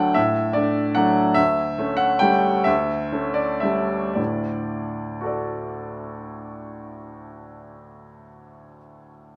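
In a rubato 3/4 waltz feel, moving between 109 and 155 BPM and slowing from 0.8 to 4.2 seconds, this graceful, elegant classical fragment in D major is cut from a longer piece. A solo baby grand piano, tuned to A4 = 441 Hz, plays alone from 0.0 to 9.4 seconds across a span from D2 to A5, its clear, open tone carrying long sustain and sitting up front, while the harmony moves from D to A7/D and settles back on D at 4.2 seconds. Close, detailed miking captures the instrument within a wet, large studio reverb.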